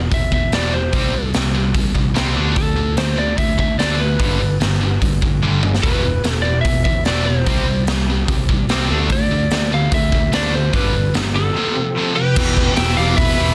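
A dense, heavily limited modern mix with light reverb carries this aggressive, heavy hard rock piece, cut from a longer track and moving at 147 BPM in a straight 4/4 in E phrygian. Two picked electric guitars drive the riff: one is high-gain and distorted, and the other is an overdriven cranked stack sitting in the background, over a growly, punchy picked bass. The raw garage drum kit sits up front, saturated and gritty, with a punchy kick and a pumping stone-room ambience. A drum fill at 5.4 seconds leads into the entry of a fat, lightly overdriven tonewheel organ at 5.8 seconds, kept very quiet, with key click and a slow rotary speaker. Over the top, a lightly driven, twangy lead guitar carries the melody through a digital delay as the chords move through E5, C5, D5, G, Csus2 and F before landing on Em. A dark octave-fuzz lead guitar adds a second line at 12.2 seconds, just before the closing section begins.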